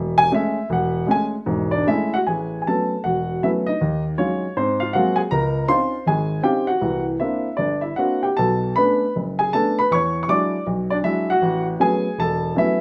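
Solo jazz piano with a playful, warm mood, this short excerpt is cut from a longer piece and runs just under 13 seconds. A dark, mellow baby grand carries everything on its own, sitting up front with a natural tone and ranging from deep bass notes up into its high register. The playing is in 4/4 with a swung eighth-note feel, while the time also bends freely in a rubato manner. It opens on a major-seventh chord, then moves through richly extended harmonies such as sixth-ninth, eleventh, thirteenth and ninth chords before settling back on the sixth-ninth sound near 11.4 seconds. A moderate studio reverb gives the instrument a sense of room around it.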